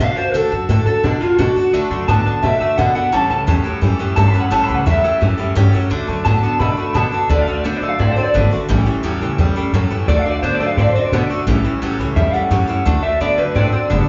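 A dark, slightly broken-up electric guitar through a small old amp leads up front with subtle chorus, slapback and tape echo, soloing over the first 7.3 seconds of this upbeat, retro 173 BPM rock excerpt in D major, while a thumpy, woody upright bass on gut strings holds down the low end, a picked steel-string acoustic guitar with fresh strings and audible finger squeak adds slapback-tinged accompaniment, and a clean, twangy electric guitar with analog chorus and slapback joins on a riff at 1.7 seconds, the band captured live through the venue's PA in club reverb.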